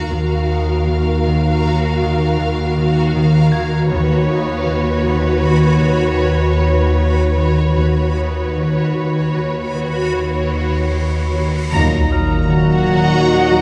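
A huge sub drop opens this ominous, mysterious cinematic suspense cue in an uneven 5/4, where a deep, rumbling, warbling drone and rich bowed cello and double bass sections anchor the low end beneath a ringing, fingerpicked concert harp riff, a close, focused viola section, lush violin sections with vibrato carrying a smooth melody and an expressive second line, a reversed, dreamy swelling texture, and a quieter high harp texture, until a bright cymbal swell from 10.5 seconds leads into an accent at 11.7 seconds where punchy trombones and distant, mellow French horns add sustained chords in a dark, reverberant hall.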